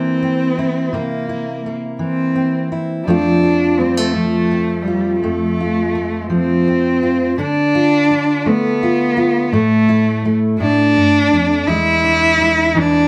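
A bowed cello sings a yearning, wistful folk melody with expressive vibrato and portamento, sounding slightly distant, over a full-bodied fingerpicked steel-string acoustic guitar in a slow, straight 6/8 at 56 BPM, both playing throughout this 13.1-second passage in light reverb as the chords move from C7 and F through Dm and A5 to E7.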